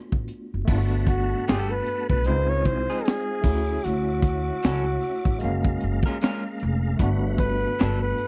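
A barky, overdriven tine electric piano with fast tremolo opens this relaxed, soulful neo-soul and R&B excerpt, joined almost at once by a woody pizzicato upright bass and a crunchy breakbeat kit with a punchy kick, high-tuned snare, finger snaps and dark cymbals, all in a swung 16th-note feel. A tonewheel organ slips in underneath at 0.7 seconds with slow rotary speaker and key click, before a breathy, intimate flugelhorn takes the melody at 1.1 seconds with scooped notes and slapback echo, while a slightly broken-up, lo-fi electric guitar through a small old amp adds a second line from 1.5 seconds. Lush major-ninth chords drift beneath a dry, close 1970s-style studio sound with small room ambience and vinyl crackle.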